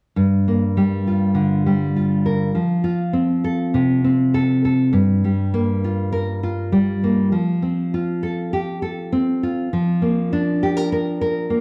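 A fingerpicked nylon-string guitar sits up front throughout this short folk excerpt, playing accompaniment with a full-bodied, deep classical tone. The mood is reflective and intimate, carried by a straight pulse in four at 100 BPM. The harmony moves from Gm7 to F, then begins again on Gm7 at 4.9 seconds for a second passage that returns to F and settles on Bb/F near 9.7 seconds. The guitar stays between its low G2 and a Bb4 at the top of its range. A large, wet studio reverb surrounds the playing, and the dark production lends the recording a warm feel.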